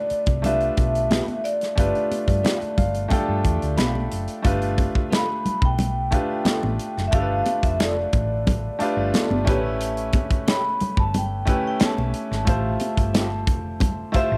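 A straight 4/4 groove at 90 BPM from an up-front studio drum kit with a punchy kick and medium-tuned snare, round, dark hollow-body bass and damped, high-tuned congas carries this bittersweet, silky slice of lush 1970s-style soul, where a ringing vibraphone with slow motor vibrato and analog delay sings the melody over brilliant grand piano accompaniment (the piano adds a fill at 2.4 s), while a slightly broken-up electric guitar riff with ensemble chorus enters at 1.1 s in the background, all captured as a home cassette recording in a small room with light reverb on a cut from a longer piece.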